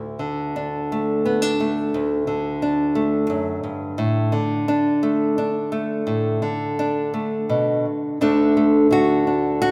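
A bright, small-sounding nylon-string guitar sits up front in this fingerpicked solo folk excerpt, drifting through a rubato 3/4 metre with a nostalgic, pastoral mood. It moves from a D5 chord to Asus4 at 4.0 seconds before settling on D at 8.2 seconds, its range reaching from low D2 up to F#4. A moderate concert hall reverb adds a church-like sense of space around the instrument.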